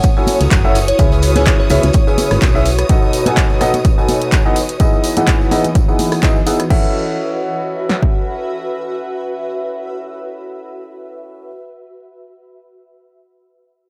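A clear, woody upright piano, slightly detuned and up front, carries the riff in this energetic, bittersweet piano house excerpt from 0.2 to 11.5 seconds, pumping against the kick and moving through a filter sweep and delay. A punchy, tape-warm analog drum machine drives the swung 4/4 groove. A layered electronic house kit adds crash, handclaps, hi-hat and rim click, while a very quiet, dark brush kit plays softly and soft-handed tambourine and congas sit in the background. A round, mellow FM bass with a fast attack pushes the low end until 2.8 seconds, and a glassy, crystalline synth bell with chorus briefly warbles behind it. A lush, bowed violin section holds sustained chords through the first section alongside a cloudy, evolving granular pad. The strings and hand percussion stop at 6.7 seconds and the house kit a moment later, as the harmony cycles from F#m7 through C#m7, B7 and Emaj7 back to F#m7. 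The mix sits in light reverb, with the pad softened further by its own built-in reverb.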